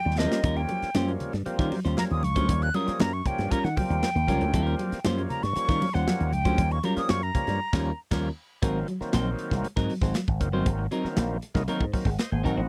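A dry, close recording in a 1970s studio style carries this gritty funk excerpt, with a breathy, expressive concert flute leading the melody until 8.0 s as the band lands an accent. Underneath, a punchy slap bass with an envelope filter and a tight drum kit with bright cymbals sit up front beside a twangy clean electric guitar, while a hollow-bodied semi-hollow guitar plays a riff in the background and an overdriven tonewheel organ adds thick stabs through a slow rotary speaker. Very quiet congas played with hard hands fill out the groove until 7.5 s, and at 8.6 s the harmony moves from Eb9 to Ab9.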